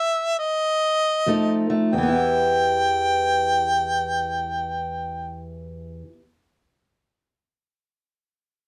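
Dark, lightly reverberant production frames this brief, soulful and smoky acoustic country blues fragment in E harmonic minor at 88-98 BPM with a swung 4/4 feel, where an up-front, warm harmonica carries a jazz-inflected solo melody with light vibrato, scooped notes and a smooth top from the opening, the pace slowing through the first 1.9 seconds as a fingerpicked steel-string parlour guitar enters up front at 1.3 seconds on an F7 that settles onto Em, and the harmonica stops at 5.4 seconds.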